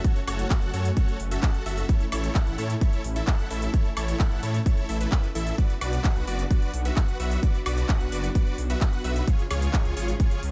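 Powerful and euphoric, this festival progressive house excerpt drives along in a straight 4/4 feel, cut from a longer piece and moving through F#m, A, Bm and C#. A punchy, tape-warm electronic kick sits up front, while a layered big-room kit adds handclaps, crisp hats and woodblock with an overdriven bite. A huge, dense supersaw carries the riff with a sub octave beneath it, touches of vibrato, delay and sidechain pumping. Underneath, a thick detuned saw bass enters at 0.3 seconds, saturated and chorused with its own pumping. In the background, a lush, airy pad with a slow attack and a noise layer holds sustained chords, shimmering through chorus and phaser and breathing with the sidechain, all in a dry mix with little reverb.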